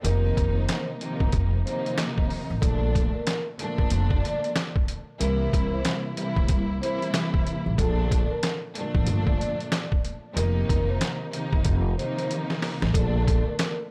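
Nostalgic and warm, this boom-bap hip-hop excerpt moves at 93 BPM in Bb major with a swung 16th-note feel, its chords drifting between F7sus4, Bbmaj7 and C7. A gritty, compressed, pitched-down sampler-style kit sits up front with a thumpy kick, medium-tuned snare, hi-hat and handclaps, joined by a woody pizzicato upright bass and a bowed studio string section whose vibrato and portamento lend a smooth, expressive bed with a cassette tape tint. A mellow, ringing vibraphone played with soft mallets carries the melody through tape echo, with slow motor vibrato and a vintage, band-limited tone, while a drum fill arrives at 12.3 seconds, all captured in a dry, small room.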